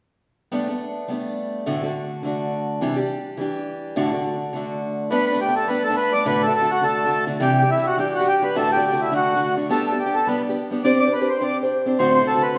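A lightly swung four-beat pulse drives this cheerful, bright Celtic folk snippet, cut from a longer piece, as a boxy, picked archtop guitar opens alone at 0.5 seconds with up-front chords. At 5.1 seconds a reedy, mellow accordion with a full, mid-forward tone enters with the melody, sitting slightly above the guitar and carrying through to 12.6 seconds. The pair sound as if captured in a church or concert hall, wrapped in a wet, ringing reverb.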